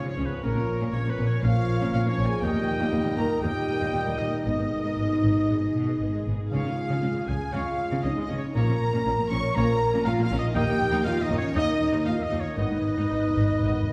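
A heroic, adventurous cinematic cue at 119 BPM in straight 4/4, with a lush, distant symphonic violin section carrying the melody over a clear solo oboe, an airy flute ensemble and expressive close studio violins as second lines, while intense violas accompany and a smooth cello and double bass section anchor the bass. Mellow French horns hold sustained chords above dark, roomy trombones, punctuated by distant trumpet stabs and a bright, ringing fingerpicked harp in arpeggios, as the harmony cycles through Bbm, Eb, Abm and Db. Round soft-mallet timpani enter briefly at 6.5 seconds and return with a fill from 12.6 seconds, all set in a wet scoring-stage reverb that places the orchestra further back in the room.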